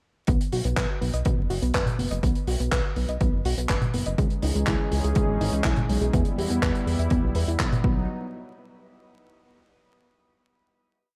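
An overdriven, punchy electronic kick drives this short, sunny Italo disco piece at 123 BPM in B major, pounding a four-on-the-floor pulse from 0.3 seconds. Around it, a damped 70s drum kit adds dry, rolled-off handclaps, hi-hat and toms in a disco machine beat, treated with gated reverb. A glossy, nasal chorused synth bass runs a sequenced sixteenth-note line, while a soft, round pluck spins an eight-step arpeggiated sequence through chorus, delay and shimmer reverb. At 4.2 seconds a mellow, warbling analog pad joins with sustained chords that move from C#madd9 through Em and back to B. The verse closes into a brief final hit, and the whole danceable track sits in a small room ambience with light reverb and a vinyl crackle.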